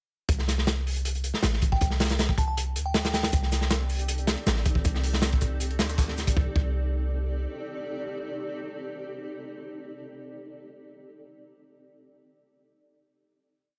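A dark, atmospheric drum and bass piece with a jungle edge, running at 158 BPM in 4/4 with a straight feel and set in C dorian over a Cm69 chord. It opens at 0.3 seconds straight into a drop, where a crunchy, saturated acoustic breakbeat kit sits up front, heavily chopped, with a tight kick, a medium-tuned snare, hi-hat and a rolled-off top, joined by a deep, boomy 808-style bass holding long dark notes between A1 and D2. A glassy, crystalline FM bell floats in the background with short answering phrases around G5 to A5, its vintage sound carrying chorus, 12-bit sampler grit and dub echo. A second, sampler-style breakbeat kit with a high-tuned snare, hi-hat and shaker adds a compressed, high-passed looped layer with edits that sounds re-recorded in a small room. From 3.8 seconds a cloudy granular pad rises with a slow attack, its detuned, blurred chords moving one shape in parallel with syncopated pushes through built-in reverb. 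The final chord arrives at 6.4 seconds, the drums then fall away and the bass stops by 7.5 seconds, leaving the pad ringing out until 10.2 seconds over a bed of studio ambience.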